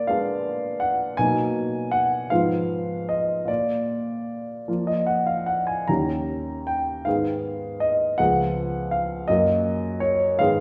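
Bathed in a large studio's wet reverb and heard from further back in the room, this short cut from a longer romantic character piece features a warm, present solo grand piano moving in a stormy, brooding rubato 6/8 through restless chords such as Bb7b9, Bmaj7 and Fdim/Ab before settling from Db7 onto Gb near 9.3 seconds.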